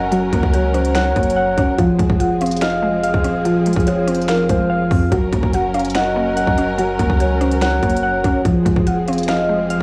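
Hip hop trap at 144 BPM in a half-time feel and F phrygian, this melancholic yet hard-hitting passage pairs up-front soft, warbling electric-piano-like synth arpeggios with a hollow, woody clarinet-like synth lead carrying tape echo. Beneath them sit lush, bowed symphonic strings, a background mallet-like pluck and a deep, dark 808 bass, all under a trap kit with a hard-clipped kick, sharp snare, crisp hats and finger snaps, with cassette-tape coloring and light digital reverb over the Gb to Fm chord movement.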